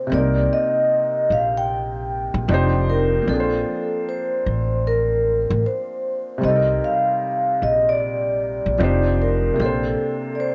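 This lo-fi hip hop excerpt moves at 76 BPM in 4/4 with a swung sixteenth feel, settling into C dorian with a nostalgic, hazy mood. A vibraphone played with soft mallets carries the melody from the opening to 10.5 seconds, its ringing, airy tone colored by a slow motor vibrato. Beneath it, a felt-muted upright piano supplies accompaniment, intimate and mellow, with audible action noise and a cassette-tape tint of its own. An upright bass enters at 0.1 seconds and drops out at 9.9 seconds, its pizzicato on steel strings sounding woody, growly and thumpy up front. The harmony cycles through Cm7, Fsus2, Bbmaj9 and Cm9, while a moderate spring reverb and the wobble of worn, warbling old tape with pitch drift give the recording its faded character.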